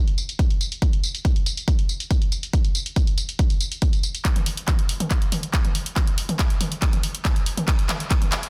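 A heavy, layered electronic kick drum sits up front from 0.4 seconds, driving this dark, hypnotic techno fragment in a straight 4/4 pulse. Around it, a techno drum kit of handclaps, hi-hat, tambourine and toms enters at 0.1 seconds, its hats, percussion and toms pumping through sidechain compression while low-pass filtering dulls the hats, percussion, snare, toms and room sound. Both the kick and the kit carry the character of being re-recorded in a large room, yet the overall mix stays dry with little reverb. From 4.2 seconds the second section turns into a build-up and drum fill that runs to the end at 8.5 seconds. The dense, heavily limited master keeps the whole cut from a longer piece pressing and relentless.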